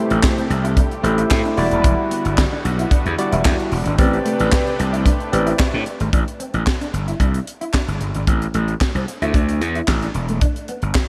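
A straight, tight funk groove from a dry, up-front drum kit with a high-tuned snare drives this slick, danceable early-eighties boogie funk excerpt, with growly, overdriven slap bass punching underneath and very quiet, distant group handclaps. A barky tine electric piano with lush chorus and slapback echo plays a fill at 0.8 seconds, while a thick, warbling sawtooth unison pad holds sustained chords in the background until both drop out near 6.1 seconds. A dark, clean fingered electric guitar keeps its chorused riff going in the background through the second section, all in a big arena-like hall reverb.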